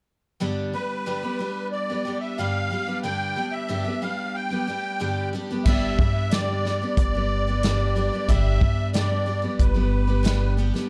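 Nostalgic and hopeful, this short folk rock and heartland rock cut at 91 BPM in G mixolydian opens with a shimmering, octave-doubled picked twelve-string acoustic guitar and a reedy, wet-tuned musette accordion carrying the melody up front, before a woody, thumpy pizzicato upright bass and a punchy, airy country drum kit with crash, hi-hat, kick and snare join at 5.7 seconds, all set in studio reverb with a dark, warm production.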